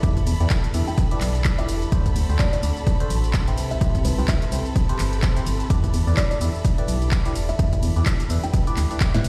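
Bittersweet and soulful, this piano house excerpt at 127 BPM in E minor swings lightly over a punchy, tape-warm analog kick and a layered house kit of cabasa, handclaps, hi-hat, ride cymbal and snare, while a hollow, organ-like FM bass pumps up front, a biting FM electric piano with a noisy edge plays a phased, delayed riff, a dark studio string section holds bowed chords with vibrato and portamento, and a woody kalimba melody with delay sits in the background over Em7, D7 and Cmaj7, all heard through stone-room reverb on a big sound system until a drum fill at 9.1 seconds.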